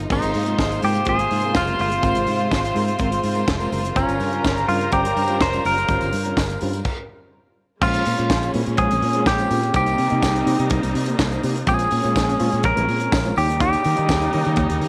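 A tight, acoustic funk drum kit drives a straight disco groove, its high-tuned snare, snug kick, hi-hat and crash sitting mid-forward with a rolled-off top, while a very quiet, jingly tambourine adds shimmer. A round, foam-muted fingered bass anchors the low end, a dark, mellow electric guitar accompanies in the background, and a lush, focused string section holds sustained chords behind it, moving through colours like Ab69 and Bbm69. Up front, a twangy, compressed clean electric guitar carries the picked melody, and a distant, reedy violin section with gut-string tone and light vibrato adds a second line until 6.8 seconds. A stop hits at 6.9 seconds, and the groove returns at 7.8 seconds with a new passage cycling through Bbm9, Cm7 and Eb7. Light reverb and small-room ambience give this driving, sultry cut from a longer piece an intimate studio feel.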